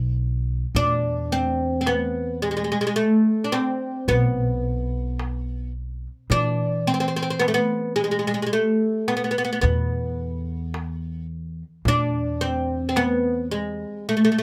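A light reverb gives this short cut from a longer Arabic maqam ensemble piece a gentle sense of space, with the oud placed up front and the other parts sitting lower in the mix. The mood is soulful and hypnotic, moving at 108 BPM counted in eighths across a straight 10/8 metre in E maqam hijaz, tuned to A4 = 438 Hz. The fretless oud carries the melody from G#3 to E4, its plectrum-plucked double strings sounding bright and woody. Beneath it, the upright bass plays pizzicato on steel strings between B1 and E3, with a dark tone. The darbuka enters at 0.8 seconds, its clay shell and natural skin played with soft hands and given a compressed, saturated edge. The bass stops at 13.8 seconds, and the oud rings on alone until 14.4 seconds.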